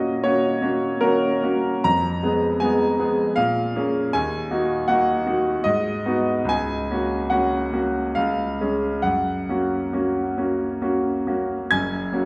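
The recording places the listener further back in a recital hall, with a wet reverb tail of about 1.6 seconds and a top end that rolls off above 10.9 kHz. Within that space, a solo grand piano carries a brilliant, smooth tone with a vintage cast and long sustain, spanning F#1 to G#6. This is a romantic classical character piece in F# major, warm and lyrical, moving in 3/4 with a rubato feel between 66 and 80 BPM. The harmony opens on F#/A#, passes through Fdim, A#m7, D#m and G#m7, then settles through F#/C# and C# to arrive on F# at 9.0 seconds. The excerpt is cut from a longer piece, and the piano plays from the start until 12.3 seconds.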